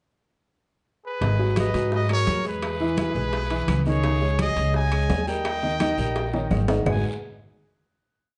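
A bright trumpet section opens this short, passionate salsa piece in G# minor at 170 BPM, entering at 1.1 s in the pickup bar with a present, vibrato-laden motif of call phrases, partly doubled in thirds. At 1.2 s the band arrives: a clear, intimate upright piano plays a woody, boxy montuno in octaves with audible action noise, while a growly, thumpy upright bass sits up front with a pizzicato tumbao that anticipates the chords through G#m7, E, C#sus2 and D#. The percussion carries the dance feel: thick-skinned congas with slaps and open strokes in the background, tight, high-tuned bongos in steady eighths with hand bell kept very quiet, ringing metal-shell timbales with shell pattern and bell, and a raspy guiro, joined from 1.6 s by faint woody claves tapping a two-bar time line. A drum fill leads into a final G#m7 chord at 6.9 s. The production is dark and warm, set in a moderate large-studio reverb.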